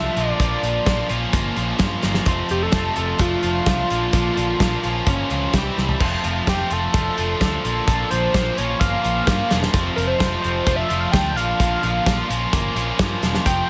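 An upbeat, jangly indie rock passage in 4/4 at 129 BPM, cut from a longer piece, opens immediately with a screaming, gritty synth lead carrying the melody between F4 and G5. Its sawtooth and pulse-wave tone is coloured with distortion, chorus, vibrato and a slapback echo. Beneath it, two overdriven, picked electric guitars play riffs: a crunchy, bright one up front spanning F2 to F4, and a biting one in the background with subtle chorus and slapback echo. A growly, punchy picked bass moves between E1 and G2, and a loose acoustic drum kit enters at 0.2 s, mid-forward in a small room with a tight kick, medium-tuned snare, dark cymbals, hi-hat and toms. The chords cycle through Bb, Bbm, F and Dm/F, touching C before a drum fill at 5.8 s leads into a repeat of the opening section at 6.0 s, where a Bbadd9 briefly colours the progression, all framed by studio ambience.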